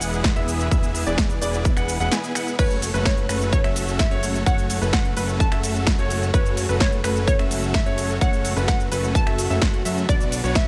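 A straight 4/4 pulse at 128 BPM anchors this powerful, anthemic festival progressive house excerpt in F# minor, where a punchy, up-front electronic kick lands at 0.2 seconds over a big-room dance kit of crisp hats, snare, snaps, shaker, ride and crash, while a fat, saturated analog bass, a huge detuned supersaw riff with delay, a lush phased pad in the background and a present baby grand piano arpeggio all pump with sidechain, joined at 2.6 seconds by a hollow, bouncy square pluck melody with chorus and delay as the chords move from E to F#m and on to Bm in a dry mix.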